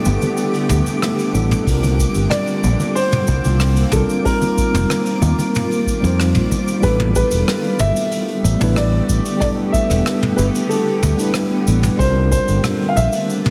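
A heavily compressed, radio-like sound wrapped in a lush hall reverb carries this relaxed sunset chillout excerpt at 93 BPM, where a mellow tine electric piano with tape echo and a shimmering, detuned ambient pad with sampler grit hold sus chords from the start, alongside a twinkling granular texture in the background until 6.8 seconds. A punchy, up-front fingered electric bass, an airy brushed jazz kit with cabasa, hi-hat, rim click and toms, and very quiet damped congas set the groove, with a deep analog electronic kick arriving at 1.7 seconds. From 2.3 seconds a dark, boxy grand piano with digital delay carries the melody over the gently shifting harmony.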